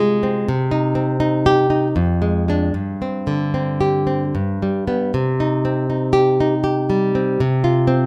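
In a rubato 3/4 at about 78 BPM with uneven beats, this brief, intimate fragment of a romantic solo classical guitar piece unfolds in C minor, tuned to A4 = 438 Hz. A single fingerpicked nylon-string guitar sits up front with a warm tone, ranging from F2 to Ab4, and a finger squeak catches the ear amid the moderate recital hall reverb. Its wistful phrase moves through Cm, Ddim/F, Gsus4 and G, returns to Cm at 5.1 seconds and settles on F5/C at 7.4 seconds.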